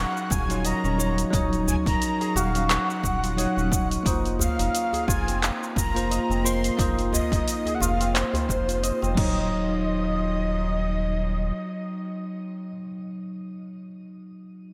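Meditative and warm, this organic downtempo excerpt sets a breathy, flute-like synth lead with vibrato over a bell-like tine electric piano, shimmering hammered santur arpeggios and a round, dark analog bass up front, while a punchy overdriven electronic kick, a layered deep house kit with handclaps, shaker, hi-hat and crash, and a tight, cracking djembe tucked in the background drive the groove until about 9.3 seconds, leaving the melodic parts to ring on in shimmer reverb within a bright 1980s-style digital production.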